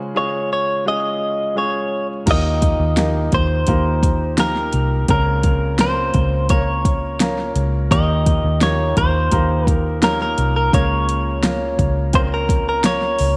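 A lightly reverberant, intimate sound opens this hopeful, anthemic piano-driven pop excerpt at 85 BPM in Eb mixolydian, where a clear grand piano with audible action noise begins, joined a moment later by an up-front, compressed clean electric guitar melody carrying subtle chorus and slapback echo, before a round, foam-muted fingered bass and a tape-warm deep house drum kit with deep kick, fat snare and metallic hats arrive at 2.3 seconds over chords moving between Ebadd9 and Bbmadd9/Db.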